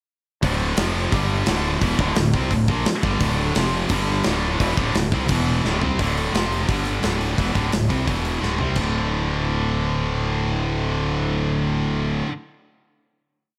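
A tight, distorted electric guitar sits up front, picking a bright power-chord riff that drives this short, complete heavy metal piece with an epic, relentless mood in a straight 4/4. A second, scooped high-gain guitar picks the same kind of power-chord riff alongside it, while a fuzz-drenched, overdriven fingered bass growls through a driving eighth-note line that doubles the guitar riff. A big acoustic rock drum kit, mid-forward with a rolled-off top, a medium-tuned snare and a tight kick, lays down a big rock groove with hi-hat, splash cymbal and toms, and drum fills mark the turn into the outro at 6.0 seconds. The drums stop at 8.8 seconds, leaving the guitars and bass to hold a final chord that rings until about 12.3 seconds. The riff moves among power chords on D, F, G and E, with one minor chord early on, and a small room reverb gives the parts a close, compact space.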